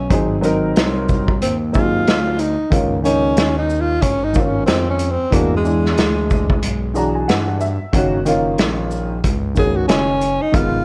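Jazz-hop with a smoky, cool mood, this short section cut from a longer piece sits on a swung groove in 4/4. A breathy tenor saxophone carries the melody as a solo throughout, its subtone and soft attack sounding close-miked and whispered, with a gentle vibrato. Beneath it, a dark upright piano supplies woody, slightly detuned chords with audible action noise and long sustain, stepping forward with a brief fill at 6.6 seconds. A smooth synth bass glides between notes with portamento and vibrato, its wave-folded sawtooth and triangle tones held in long sustained lines. The vintage acoustic drum kit is warm and up front, with a punchy kick, hi-hat, shaker, a medium-tuned snare and a rolled-off top in a pumping small room. Light reverb and worn cassette tape character give the whole recording a warbling pitch drift, as the harmony moves from Ab7 through Db69 and E9 to Gb6.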